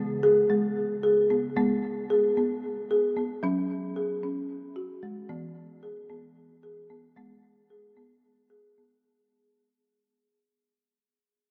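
Bathed in a vast cathedral reverb with a long 5.5-second decay, this short fragment of world meditative music has a gentle, hypnotic mood and fades out across its full 9 seconds. A solo folk marimba, played with medium mallets and carrying a diffuse ambient delay, sits up front with a woody, rustic tone, moving in 7/8 at 225 BPM in eighths with a straight feel. It plays in G# minor over C#5, G#m, F#5 and E before settling back on G#m.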